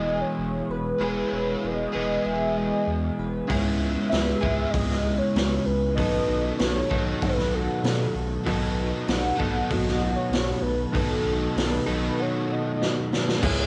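A hazy, small-room cassette recording with a dulled top end frames this dreamy, wistful shoegaze and dream pop fragment at 97 BPM, where a velvety, detuned synth lead with chorus, tremolo and analog delay sings over a dark, shimmering fingerpicked twelve-string set back in the mix, a clean direct-recorded electric riff washed in reverse reverb, an overdriven semi-hollow guitar, and a thick saturated sub bass moving from Emaj7 to C#m7 and B7, while a gritty, up-front garage drum kit enters at 3.5 seconds and closes with a fill as a jingly tambourine barely sounds at 13.4 seconds.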